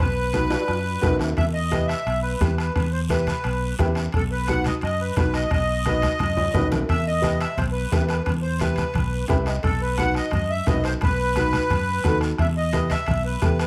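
A reedy, sweet accordion with light tremolo tuning leads this driving, danceable cumbia at 174 BPM in E harmonic minor. It rides over a growly, up-front fingered electric bass and a woody, slightly detuned upright piano with short sustain, which adds a brief fill at 9.1 s. Underneath, a soft-beater bombo with a vintage, band-limited tone joins thick-skinned, low-tuned congas, a raspy close guiro and ringing metal-shell timbales set distant in the background, with drum fills at 0.5 s and 6.0 s. The chords move between B and Em under a moderate large-studio reverb in this passage cut from a longer piece.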